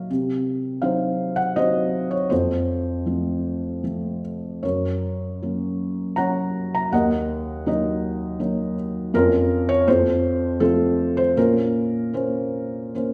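A wet recital-hall reverb with a 1.3-second tail surrounds this short classical fragment, recorded in a church or concert hall and cut from a longer piece. The only voice is a felt-muted upright piano placed up front, its tone soft, dark and intimate, cushioned by thick felt, with audible action noise adding a close, private quality. It plays solo for the full 13.1 seconds, spanning Eb2 up to Bb5. The tempo sits around 80 BPM in 3/4, but the beats are uneven and the phrasing breathes with rubato, giving the lyrical line a wistful, reflective mood. The harmony stays in Bb harmonic minor, passing from Cdim through F, Gb and Ebm to Bbm/F and F before coming to rest on Bbmadd9 at 11.4 seconds.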